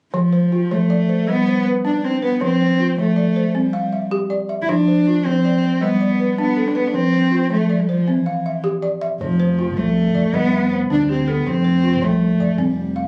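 A bowed cello with a dark vibrato carries the melody while a dry, woody balafon struck with soft rubber mallets plays arpeggios, both up front from the opening, in this hypnotic, flowing excerpt of West African string and xylophone music in F lydian, moving at 106 BPM in 12/8. At 9.2 s a round, overdriven fingered electric bass joins low in the mix as the opening material repeats over chords circling between F, G and C. The sound is that of a phone capturing the room, with club reverb and compression.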